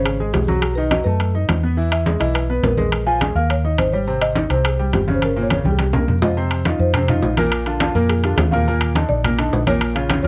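Sophisticated and danceable, this Afro-Cuban jazz excerpt puts a woody, mellow marimba played with soft mallets on the melody, over a clear, slightly worn concert grand piano carrying the accompaniment. A dark, round hollow-body electric bass sits punchy and up front, while low-tuned, saturated congas and dry, metal-shelled timbales ring out from 0.1 seconds. A drum fill at 5.5 seconds leads into a new section at 6.4 seconds, all captured with close, detailed microphones and a light reverb.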